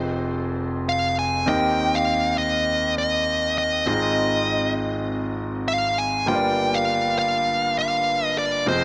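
A light swing on the sixteenth notes gives this 4/4 pop passage a gently lilting pulse, and its mood feels both nostalgic and urgent. A concert grand piano carries the accompaniment from the start, its tone clear and intimate, with deep bass, long sustain and the audible noise of its action sitting up front in a polished sound. At 0.9 seconds an overdriven electric lead guitar enters with the melody, its picked tone dark and smooth, placed up front and trailed by delay. The harmony moves through Fm7, Eb6, Ab6 and Gm7, and the guitar line sits in a high register while the piano spans a broad range beneath and around it. A lush hall reverb with a long decay surrounds the whole 8.8-second section, which is cut from a longer piece.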